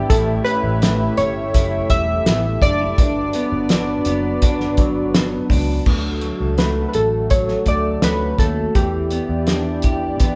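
Hazy and laid-back, this indie and bedroom pop excerpt moves at an easy 83 BPM in straight 4/4, set in D major and cut from a longer piece. A cloth-damped drum kit sits up front with a fat snare, tight kick, dark cymbals and a rolled-off top, while a foam-muted picked bass adds a round, punchy low end. An electric guitar through a small old amp plays twangy, slightly broken-up accompaniment with a vibrato effect, and a smooth, nasal analog pad with a sub octave and slow attack holds sustained chords under chorus. The melody comes from analog keys built on detuned pulse and sawtooth waves, with a filter sweep, fast attack and decaying notes, also treated with chorus. The chords move from A7 to Gmaj7, then shift at 5.9 seconds into a second section on Dmaj7 and Em7, all heard as a band playing live in one large studio with moderate reverb.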